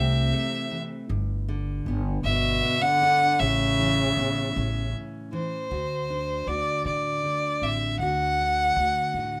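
Nostalgic and pastoral, this short passage from a longer acoustic folk piece sways gently in 6/8, with a clear, focused bowed fiddle carrying the melody up front with light vibrato over fingerpicked steel-string acoustic guitar that sounds bright and full-bodied. A dark cello adds an expressive second line with vibrato and portamento until 4.9 s, while the pizzicato upright bass gives a woody foundation as the harmony moves from C6 through G and Aadd9 to D7 at 5.7 s, where a new section begins. The rough home-demo mix sits in a moderate small-room reverb.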